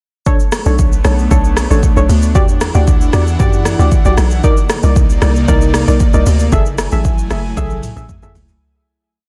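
Dry and dense, with a heavily limited modern master, this short, complete amapiano piece carries a late-night, soulful mood over a straight four-beat groove. An overdriven deep house drum kit sits up front, its layered electronic sound built on a deep, soft kick, a steady shaker, syncopated rim clicks, hi-hat and toms, and it closes with a drum fill from 7.6 seconds. A tight, punchy log drum bass, also up front, fires syncopated percussive bursts with a fast attack and a noise layer. Short syncopated chord stabs, mellow and deep with a filter sweep and chorus, bounce off a digital delay. Underneath, an airy, breathy pad holds sustained chords with a vintage, warbling character and sidechain pumping as the harmony moves through Bm9, Em9, Cm9 and F#m9 before a fade-out that begins at 6.5 seconds.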